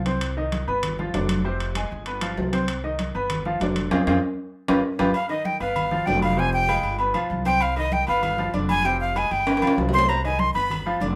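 Heard through a wet studio reverb, the band plays together in one room in this danceable, passionate salsa cut from a longer piece, moving at 195 BPM in 4/4 over Cm, G7 and Fm changes. A thumpy, gut-string upright bass, a bright and polished upright piano, soft-handed medium-tuned congas and ringing metal-shell timbales with agogo bells carry the groove, with a band accent at 3.9 seconds and a drum fill at 9.5 seconds. At 5.1 seconds a breathy jazz flute takes the solo up front, its crisp, chiffy attack and reedy straight tone sitting above the band.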